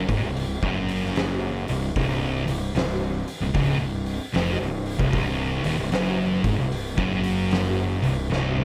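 Ominous and hypnotic, this short stoner and doom metal passage moves at a slow, heavy crawl in 4/4 with a swung eighth-note feel. Two thick fuzz guitars carry the riff together from the start. One sits up front with a distorted, warm tone, while the other stays in the background with a darker edge. The fuzz-laden fingered electric bass sits up front as well, growly and overdriven, occupying the register an octave below the guitars. An oversized, low-tuned acoustic drum kit joins at 0.1 s, sounding saturated and gritty in a bright stone room, with a fat snare, a punchy kick, hi-hat and toms, and closes with a fill at 8.3 s. The mix is dry, letting the fuzz and weight of the instruments dominate.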